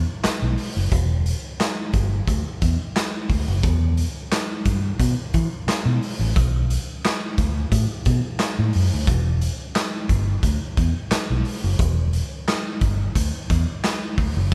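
Funk at 88 BPM in E minor, this hypnotic excerpt of a band playing live in one room opens with a dark, round, foam-muted fingered electric bass, joined at 0.2 s by a gritty, saturated, up-front garage drum kit with a punchy kick, medium-tuned snare, hi-hat and handclaps in a bright stone room that pumps, all kept dry.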